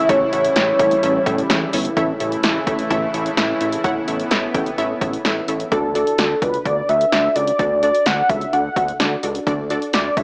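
A velvety, detuned sawtooth synth lead with chorus, analog delay and vibrato sings up front in this bright, nostalgic synth-pop excerpt at 128 BPM in D major, dropping out at 1.7 seconds and returning at 5.7 seconds, over a full-bodied unison pluck, a lush slow-attack pad holding chords until 5.7 seconds, a fat wave-folded analog bass and a punchy, overdriven analog drum machine of kick, snare and hi-hat, with the whole mix carrying a dry, gritty hardware sound, light reverb and a small-speaker character.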